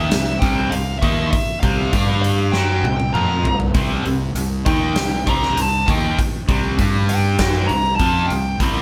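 Two overdriven guitars, a fuzz-laden bass and a bluesy lead guitar all strike up together at the opening of this energetic, anthemic hard rock excerpt, cut from a longer piece and driven at 99 BPM in a straight 4/4. A huge arena drum kit joins at 0.1 seconds, up front with a punchy kick, a medium-tuned snare, hi-hat and toms, and it breaks into a fill between 2.5 and 3.8 seconds. The dark, distorted lead guitar carries the melody high above, while a bright, cranked stack guitar with overdrive and phaser and a crunchy overdriven guitar set further back share the riff. Underneath, the fingered electric bass growls with fuzz and overdrive. The harmony moves from C to G5 and C5 power chords. The band sounds as if playing live together in a stone room with a moderate reverb tail.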